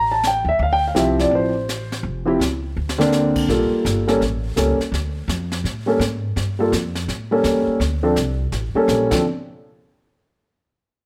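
Jazz piano trio swinging at 167 BPM in D minor, this late-night, moody excerpt cut from a longer piece shifts into D harmonic minor at 3.5 s, with a dark, mellow concert grand carrying the melody up front, its action noise audible and its deep bass smooth under a plate reverb. Beneath it, a woody, growly pizzicato upright bass sits close, while a brushed kit enters at 0.2 s with dark cymbals, a high-tuned snare and a boomy kick, adding a drum fill around 2.8 s. Chords such as Dm11, Gm9 and repeated A7b9 colour the moderate studio room before a brief break after 9.2 s.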